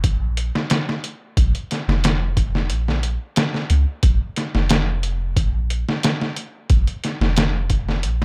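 A smoky haze of digital ambience wraps this short trip hop excerpt in Bb minor, moving at an unhurried 90 BPM in straight 4/4 with a cinematic air. Up front, a compressed, pitched-down, muffled sampler-style drum kit with a thumpy kick, medium-tuned snare and hi-hat carries a gritty overdrive. Beneath it, a soft, round 808-style bass with a sine-like tone, fast attack and decaying notes sits deep and dark between F1 and Db2, both parts running the full 8.2 seconds.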